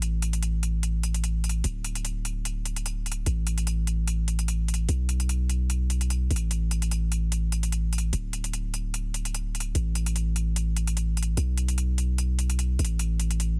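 From the first moment a deep, sine-toned 808-style bass with a fast attack and long decaying sustain sits up front beside crisp, layered, tape-warm electronic hi-hats, giving this short, euphoric and lush future bass excerpt a lightly swung half-time feel in 4/4, with a dry, heavily compressed radio-style sound that carries the hats to 13.5 seconds and the bass through to the cut at 13.6 seconds.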